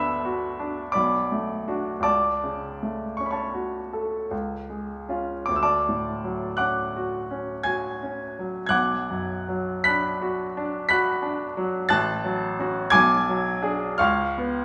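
A clear, polished baby grand piano carries this mournful, yearning romantic nocturne alone, sitting up front and spanning A1 to B6 in a 9/8 shaped by rubato. The harmony moves from Bm/D through F#m/C# and a Dmaj7 before darkening into G#m7b5/B and closing on C#7 at 14.0 seconds. A wet recital-hall reverb surrounds the instrument in this short cut from a longer piece.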